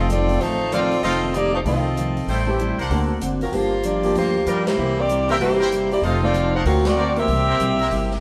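Big band swing in F mixolydian at a brisk 192 BPM, this joyful, brassy excerpt puts a clear, tight saxophone section with light vibrato up front on the melody over a woody, thumpy pizzicato upright bass, a picked steel-string acoustic guitar, an open baby grand piano in the background, a distant, roomy drum kit on hi-hat, ride and snare, and bright, distant trumpet stabs, all playing live in a stone room, with band accents at 4.6 and 6.8 seconds as the changes move from F7 through Am7, D7b13, Gm7 and C7 back to F7.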